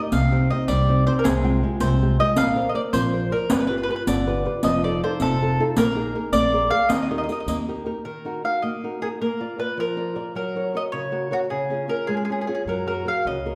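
Wistful and romantic, this Italian folk serenade moves at a relaxed 105 BPM in a lilting 6/8, opening in Eb major before darkening into Eb minor at 8.0 s. A picked mandolin carries the melody up front, its doubled strings giving a woody, singing tone, while a fingerpicked nylon-string guitar, small and dark in colour, shares the foreground with the accompaniment. Beneath them, a pizzicato upright bass with gut strings adds a thumpy low end, and a riq adds its dark jingles in the first half. The harmony winds from Cm through G7 and F7 to a Bb7sus4 resolving home to Eb, and both the bass and riq fall away just before the shift to minor, where the chords pass through Ebm, Bb, Gb and Db. The bass returns at 12.7 s under a closing Gbadd9. The band plays live together in one room, bathed in a lush, reverberant studio space, and the recording is cut from a longer piece.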